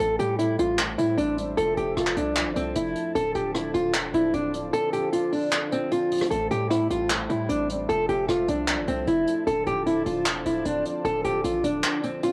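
A fingerpicked, up-front nylon-string guitar melody, brushed jazz drums with handclaps, hi-hat and rim click, a punchy, heavy 808-style bass and a boxy, mellow baby grand piano in the background open this dark, melancholic half-time trap excerpt, with a deep, detuned analog pad entering very quietly at 0.9 seconds to sustain the Am7, Fmaj7 and Dm7 chords, while the kick drops out from 4.7 to 6.3 seconds and the guitar and drums carry a cassette-tape haze within a lightly reverberant home-recorded sound.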